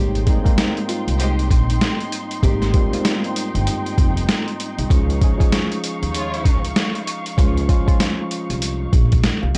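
Boom-bap hip-hop at 97 BPM in Ab major, this short, nostalgic and soulful cut swings its sixteenths in 4/4 over an Abmaj7 chord that moves to Db at 4.9 seconds. Up front sits a sampler-style drum kit, compressed, pitched down and muffled, with a thumpy kick, medium-tuned snare and hi-hat arriving at 0.2 seconds, while a woody, dark pizzicato upright bass carries tube saturation underneath. A worn, slightly out-of-tune tine electric piano supplies mellow accompaniment with a cassette-tape tint, and a veiled, con sordino studio string section holds lush, distant chords above it. In the background, a full-bodied, fingerpicked nylon-string guitar plays a brief melody with tape echo until 4.2 seconds, and an earthy chamber string section adds bowed stabs with light vibrato and tape echo. The sound is dry and gritty, with little reverb, in the manner of a hardware recording.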